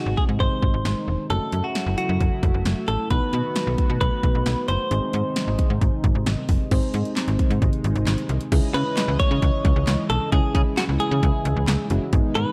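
A straight 4/4 house drum kit with a punchy kick, handclaps and gated reverb drives this nocturnal synth-pop passage, where a snappy, metallic FM slap bass sits up front beneath a bright, twangy clean electric guitar melody, while soft, warbling electric-piano-like keys accompany and a shimmering, detuned pulse-width pad holds chords in the background.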